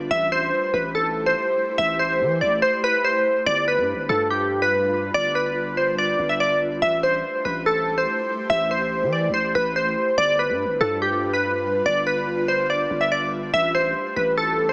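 Heard through a small-speaker sound set in a moderate concert-hall reverb, this eerie, hard-hitting trap cut from a longer hip hop piece moves with a half-time feel in 4/4. Glassy digital keys carry the melody up front, their fast-attack, decaying notes shaped by a filter sweep and coloured by chorus and tape echo. Beneath them, an ethereal, airy pad holds sustained chords from the opening, its detuned unison layers, noise layer and slow attack softened by ensemble chorus and built-in reverb into a mellow haze. A deep, long 808-style bass with a sine tone and fast attack sits low in the mix under the harmony. The chords alternate between Am7 and G7, with the music shifting into its second section at 3.5 seconds.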